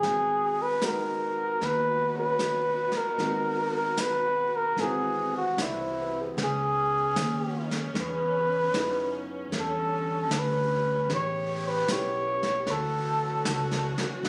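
Swung eighths at 76 BPM in 4/4 carry this melancholic, smoky jazz ballad fragment, where a vibrato-rich flugelhorn sings the melody up front over woody, long-sustaining upright piano that drops out at 12.7 s, a mellow, soft-attacked saxophone section holding tight chords in the background, pizzicato upright bass on steel strings, and a vintage brush kit with a medium-tuned snare, hi-hat and rolled-off top in a small, pumping room, the key shifting from G# minor to C# minor at 6.4 s, the whole sounding as if captured on a phone with light studio reverb and compression.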